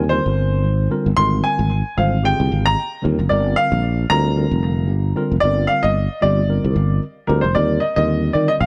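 Electric jazz fusion with a soaring, funky mood, this short cut from a longer piece moves at 113 BPM in 4/4 with a light 16th-note swing. A clear baby grand piano carries the melody up front, its natural tone and short sustain sounding in the upper register between Bb4 and C6. Beneath it, a worn tine electric piano, slightly out of tune and heard through its built-in speakers, supplies clean accompaniment in the middle range. A sustaining fretless electric bass sits prominently in the mix, bright, direct and growly, anchoring the low end from F1 up to Eb3. The harmony opens on Abmaj9#11, shifts to Gm7 at 3.3 seconds, and arrives on Ebmaj9 at 7.6 seconds as a new section begins, all captured in a dry, close 1970s-style studio sound with small room ambience.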